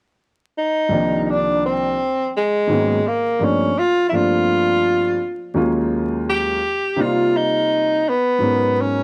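Mellow and cool, this hip hop excerpt at 84 BPM in C minor swings its sixteenths as a soft-attack tenor saxophone with light vibrato and a roomy, jazz-style tone sings a solo melody from 0.6 seconds, joined at 0.9 seconds by a woody upright piano with long sustain playing accompaniment through minor eleventh chords, all in a dry, close 1970s-style studio sound dusted with vinyl crackle.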